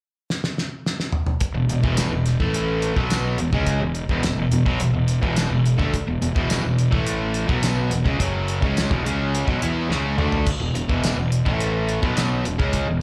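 A straight 4/4 groove at 106 BPM drives this sunny, swaggering classic rock excerpt in E major, opening with a drum fill from 0.3 seconds on a cloth-damped, thuddy kit with a fat snare, tight kick, dark cymbals, tambourine and toms. At 1.5 seconds a crunchy, bright, double-tracked overdriven guitar riff enters up front, joined by a growly, punchy fuzz bass, moving between E5 and A5 power chords with another drum fill near 9.9 seconds. The whole performance sounds like a live club gig heard through the venue's PA, with light reverb.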